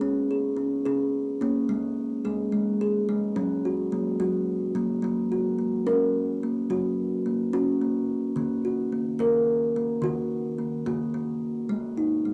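Calm and gentle, this short excerpt of world-flavoured, meditative tuned percussion moves at an unhurried 72 BPM in a straight 6/8, counted in dotted quarters and set in F# major pentatonic. A solo kalimba carries the whole recording from 0.0 to 12.3 seconds, its thumb-plucked tines ringing woody and warm from a solid board, sitting up front and spanning D#3 to A#4. The harmony drifts from C#5 to a chordless stretch at 1.7 seconds, then settles on F# at 3.4 seconds before moving to D#m at 8.4 seconds and closing on G#5. An opening passage gives way to a second section at 5.0 seconds, and the piece is cut from a longer work. The sound is a home recording on cassette, with the kalimba carrying a tape colour and a wet studio reverb of short decay.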